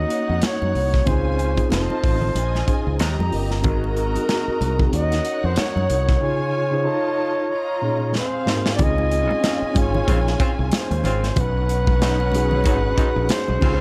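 A breathy, whispered flugelhorn carries the melody with vibrato and scooped notes in this lush, smooth 1970s-style soul excerpt in Db major at 93 BPM, with a lilting 16th-note swing. Beneath it, a studio string section adds an expressive bowed second line with portamento, a mellow tine electric piano supplies clean accompaniment, and a bright, punchy fingered electric bass sits up front with an acoustic drum kit driven by a punchy kick, while damped congas enter very quietly at 0.4 seconds. A drum fill at 8.2 seconds leads into a new section where a tight, background horn section adds stabs from 9.4 seconds, all in a small room ambience over rich seventh and ninth chords.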